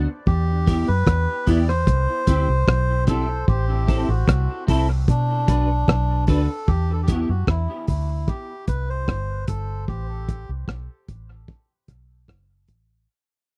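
A dry, close 1970s-style studio sound with little reverb frames this deep, heavy dub reggae in E minor at 75 BPM. A muffled, cloth-damped drum kit with a tight kick, hi-hat and rim click sits up front beside a dark, round, foam-muted fingered bass. A bright, twangy clean electric guitar with ensemble chorus and dub echo plays accompaniment until 7.3 seconds, a reedy, breathy melodica carries the melody with dub echo until 10.5 seconds, and from 6.7 seconds the music drops into a break and fades out with bass and drums carrying on.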